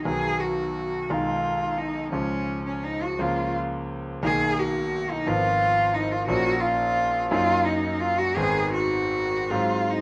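A bowed cello sings a tender, rich melody with focused vibrato over a bright grand piano accompaniment with deep bass in this romantic classical duo excerpt, moving in a rubato 6/8 at 58 BPM through chords from B to a closing G#7, with both instruments up front in light reverb.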